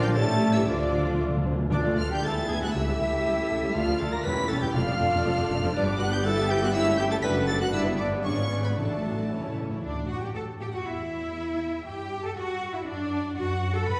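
A graceful, cheerful classical-period movement for symphony orchestra opens in D minor at a quick 119 BPM in 2/4, its rubato feel carried by nearly the whole ensemble from the first beat. Lush, expressive violins sing the melody high above a second violin line, and an airy, close-miked flute section and a solo clarinet weave further lines around them. Underneath, violas with vibrato and portamento sit in the background, dark horns hold distant sustained chords, rich cellos and soft-attack double basses anchor the bass, and a mellow solo bassoon adds brief accompaniment. Timpani played with medium mallets enter at 0.7 s with an early fill, and the music turns brightly to D major at 5.8 s before the timpani return with another fill around 9.3 s. The winds, horns and timpani fall away by 9.8 s, leaving the strings to finish the closing section. A wet scoring-stage reverb places the orchestra further back in the room.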